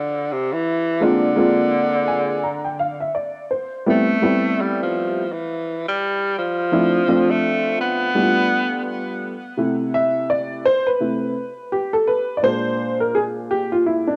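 Warm and relaxed, this swung hip hop excerpt in C major at 84 BPM opens with a breathy, vintage-toned tenor saxophone playing a clear, jazz-style melody with vibrato, colored by cassette tape and tape echo, while a warm, worn, woody, slightly detuned upright piano enters up front at 1.0 seconds with accompaniment and a brief fill, then takes a solo from 9.6 seconds after the saxophone stops at 9.2 seconds, all set in a moderate spring reverb with the character of a home cassette recording.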